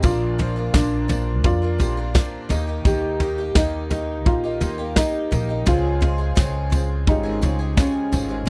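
A soft brush drum kit sits up front in this short cut from a wistful, bittersweet indie folk piece, its punchy kick, medium-tuned snare and toms heard in a small acoustic room. The tempo is an unhurried 85 BPM in a straight 4/4, tuned slightly high to A4 = 441 Hz, with the harmony moving from Bb to Eb and settling on Dbmaj7 at 5.7 seconds. A woody, dark upright bass with gut strings is plucked close to the listener with a thumpy tone. A picked twelve-string acoustic guitar adds a bright, shimmering, octave-doubled accompaniment touched with subtle chorus. Two upright piano parts fill out the arrangement: one boxy with long sustain carrying the accompaniment, the other slightly detuned, smooth and vintage in tone playing arpeggios, with a piano fill arriving at 7.1 seconds. A jingly tambourine sits in the background, and the recording has the dry, close sound of a 1970s-style studio, with little reverb.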